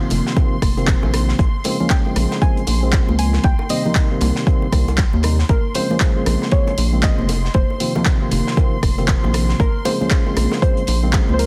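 A soft, round pluck melody with vintage sampler grit, chorus and analog delay opens this smooth, late-night deep house excerpt in Bb dorian at 117 BPM. It is joined at once by clean tine electric piano stabs through a combo amp and a high, biting chamber violin section, both breathing with sidechain pumping, over chords moving between F7sus4, Bbm9 and Cm7. From 0.1 seconds a rubbery, hollow square bass sits up front with a bouncy filter pluck, alongside dry, overdriven analog drum-machine handclaps, hats and rim clicks, bright hand-struck congas and bongos in the background, and a dry reggae kit's high-tuned snare and hats tucked further back. An overdriven, layered electronic kick lands up front at 0.4 seconds, anchoring the 16th-note swing in a dense, heavily limited modern mix.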